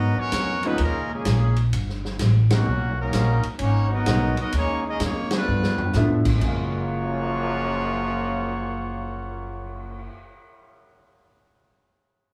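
An up-front, woody upright bass anchors this energetic big band swing passage, cut from a longer piece in F# major at 128 BPM with a swinging 4/4 feel. A clear trumpet section carries the melody while a bright trombone section with light vibrato plays a second line beneath it. Just after the start, a natural-sounding drum kit with a punchy kick, medium-tuned snare, ride, hi-hat, crash, toms and cymbal swells drives the band, and a warm baby grand piano with short sustain sits in the background as accompaniment. The full band hits accents at 2.4 and 5.2 seconds, and a drum fill at 5.5 seconds leads into a new section that settles on F#maj7 after a run of chords including G#m9, D#7sus4, Gadd9, Bmaj9 and G13. The players sound live together in a small room with a wet, short ambience.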